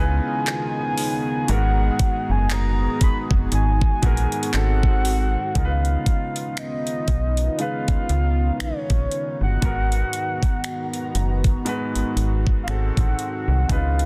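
Contemporary R&B with a moody, sensual feel and a swung sixteenth-note groove, this excerpt sets a soft octave-layered synth lead, round and dark with chorus, phaser and vibrato, over a clear baby grand piano and a shimmering, detuned pulse-width pad moving through C#9, G#m9 and G#7b9 chords. A snappy, metallic FM bass sits up front with a smooth electronic drum kit that enters at 0.5 seconds, bringing a knocking kick, metallic hats, finger snaps, handclaps and a softly clipped snare. An inharmonic synth chime rings faintly in the background from 2.5 to 5.0 seconds through ensemble chorus and digital delay, all within a dry, dense, heavily limited modern mix.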